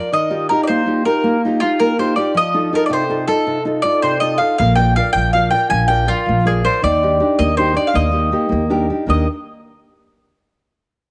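Romantic and sunny, this short Italian folk serenade sways in 6/8 at 107 BPM in Eb major, its rubato feel giving the phrases an unhurried, tender lift. A bright, woody mandolin carries the melody up front, its picked double strings ringing from F4 up to Ab5. Beside it, a classical nylon-string guitar with fresh strings is fingerpicked as accompaniment, its tone warm and close. It adds a short fill near 8.5 seconds. An upright bass joins at 4.6 seconds, played pizzicato on steel strings with a thumpy low end anchoring the harmony. The chords move from Ebadd9 through F7 and Bb to Ebmaj7, and a moderate echo-chamber reverb with small-room ambience softens the gently rolled-off sound of this brief fragment cut from a longer piece.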